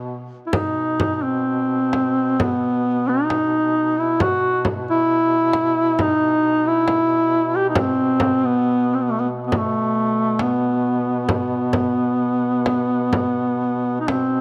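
A light small-room reverb gives this short cut from a longer Caucasian folk lament an intimate, close-quarters sound. Over a soft-attacked duduk drone held on B2, a mellow lead duduk sings a mournful, longing melody between A3 and G4, its scooped notes and vibrato carrying a smooth top. A close, dry frame drum with a warm acoustic tone enters at 0.5 seconds, and the pace sits around 67 BPM in 4/4, with uneven, rubato beats that let the line breathe freely.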